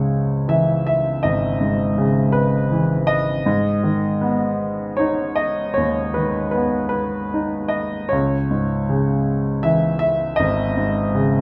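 A grand piano plays alone, its clear, present tone sitting up front in a wistful, reflective classical passage in C# minor, tuned to A4 = 435 Hz. At 79 BPM in 3/4 with a rubato feel, it moves from C#m7 to G#m at 3.5 s and settles on C#madd9 at 8.1 s, spanning G#1 to E5. A wet recital hall reverb with a 1.4 s decay surrounds the piano in a dark, warm production, and the passage, cut from a longer piece, ends at 11.4 s.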